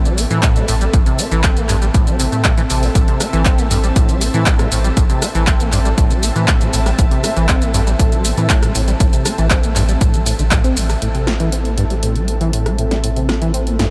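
A straight 4/4 pulse at 119 BPM drives this hypnotic, gritty acid house excerpt in A minor pentatonic. An overdriven electronic kick punches in at 0.4 s and drops out at 10.6 s, while a punchy analog drum machine adds overdriven snare, handclaps, hi-hat, rim click and shaker. A squelchy, resonant sawtooth acid bass riff with filter sweeps runs through tube saturation, lush chorus and diffuse delay over a round sine sub bass and a cloudy, detuned granular pad, both pumping with the sidechain, and the dreamy mix, soaked in huge ambient reverb, moves into a new section at 11.0 s.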